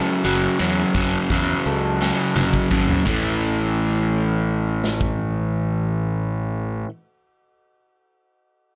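Quiet-loud alternative rock in 6/8 at 57 BPM, counted in dotted quarters, this short cut from a longer piece feels bittersweet and restless in A major. A crunchy, bright overdriven guitar sits up front playing a picked riff, while a very quiet electric guitar through a small old amp adds twangy, slightly broken-up fingered arpeggios behind it. A fingered electric bass with a growly fuzz tone holds down the low end, and a big acoustic rock kit with a punchy kick, medium-tuned snare, bright cymbals, hi-hat, ride and toms fills a big room. The harmony moves from F#m to A at 3.1 seconds, marked by a drum fill from 2.0 seconds, and the drums drop out at 5.2 seconds while the guitars and bass carry on. Light reverb gives the whole a touch of space.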